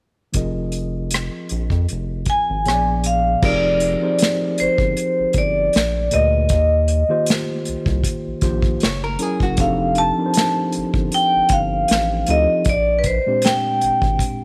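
R&B with a neo-soul lean, this warm, soulful excerpt moves at an unhurried 78 BPM with a light sixteenth-note swing, as a mellow tine electric piano, an airy acoustic drum kit with a punchy kick and bundle sticks, and a round, deep analog bass built from folded and ring-modulated waveforms set a dark foundation under chords like Fm7, Eb69 and Gb9. At 2.3 seconds a bright, ringing vibraphone played with hard mallets takes the melody up front, its slow motor vibrato shimmering, while a dark, clean, hollow-body archtop guitar adds a brief picked second line from 8.8 to 9.8 seconds. Light reverb gives the whole a small-room intimacy.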